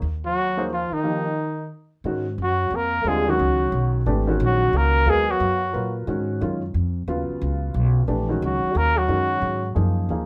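A slightly detuned upright piano and a woody, pizzicato upright bass open this cool, hypnotic jazz excerpt, swung in 3/4 at 179 BPM in G# dorian, with trumpet and trombone joining at 0.3 s. The mellow, breathy trumpet carries the melody with scooped notes, while the whispered, intimate trombone, with light vibrato and a soft attack, plays a second line beneath it. The harmony moves from Ebmadd9 through Eb, and after a break from 1.0 to 2.1 s it settles on G#m9 and later D#m, and the horns pause before briefly returning near the end, set in a moderate studio reverb.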